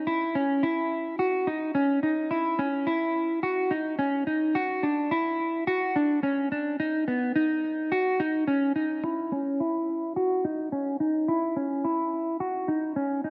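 Set to a steady, straight four-beat pulse, this ethereal, melancholic dream pop excerpt features a lone clean, dark, fingered electric guitar held up front and bathed in analog chorus, delay and a long plate reverb, with a filter sweep reshaping its tone from 9.0 seconds until the cut at 13.3 seconds.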